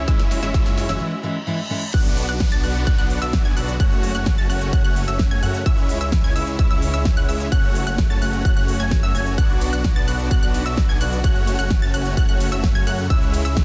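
Festival progressive house in F# minor at 129 BPM, this euphoric, emotional excerpt opens with a short build-up in which a drum fill, a filter sweep on the pluck and a reverse cymbal lead through a brief break into the drop at 1.9 seconds. A picked steel-string acoustic guitar with audible finger squeak appears only until 1.8 seconds, while background risers, reverse cymbals and downlifters run to 5.7 seconds. The drop rides a Bm, F#m and C#m progression, with huge, bright supersaw chords playing a riff and a lush unison pluck spinning high arpeggios, both carrying tape echo and sidechain pumping. Underneath, a thick, mellow detuned saw bass with chorus holds the low end, and a rich chamber string section with a reedy gut-string tone sustains chords in the background. A punchy, up-front electronic kick leads the drums, joined by a pop kit with a fat snare, crisp hats, ride, crash and shaker. 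The mix sits in digital ambience with a dense, heavily limited modern master.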